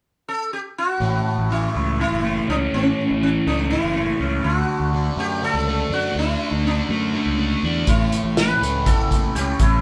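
A buzzing, shimmering sitar opens this hazy, kaleidoscopic psychedelic rock excerpt in A major, joined at 1.0 seconds by a double-tracked overdriven electric guitar riff coloured by phaser and a fuzz-soaked fingered bass, moving over A and D chords at 244 BPM in a straight 7/8. A vintage drum kit with a punchy kick, medium-tuned snare and hi-hat arrives up front at 7.9 seconds, its rolled-off top and pumping small-room sound adding weight. The band plays live together in one room, with moderate studio reverb giving the sitar's sympathetic strings a round glow.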